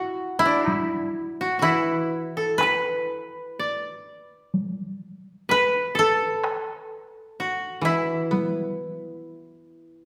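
Japanese traditional chamber music, calm and austere, in a loose rubato feel, with a woody, fingerpicked koto melody up front, a brighter second koto line, a lower koto accompaniment entering at 1.6 seconds, and a close taiko ensemble struck with heavy sticks from 0.7 to 8.5 seconds, all set in a resonant recital-hall reverb in this short cut from a longer piece.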